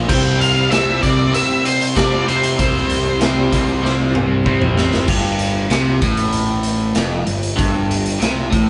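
Classic rock with a swaggering, driving feel, this excerpt opens on a C chord with a double-tracked, phaser-tinged overdriven electric guitar riff up front, a punchy fuzz bass and a raw garage drum kit whose gritty, saturated sound fills a bright stone room. A dark octave-fuzz lead guitar carries the melody over a boxy ladder-braced acoustic guitar with finger squeak in the background and a detuned, jangly honky-tonk upright piano kept very quiet. A drum fill from 3.8 s leads at 5.1 s into a section where the acoustic guitar, lead and piano have dropped out, leaving the riff, bass and drums playing together in a live, roomy ambience.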